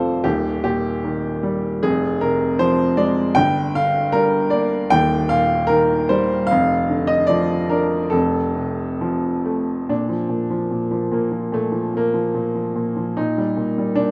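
A warm, boxy baby grand piano sits up front in this tender classical excerpt, playing a lyrical solo in Bb major with a rubato feel around 65-78 BPM, ranging from deep Eb1 to G5 through a chord path of Eb, Fm, Gm and F before settling on Bb at 9.9 seconds and closing on Eb/Bb, all bathed in the moderate reverb of a recital hall.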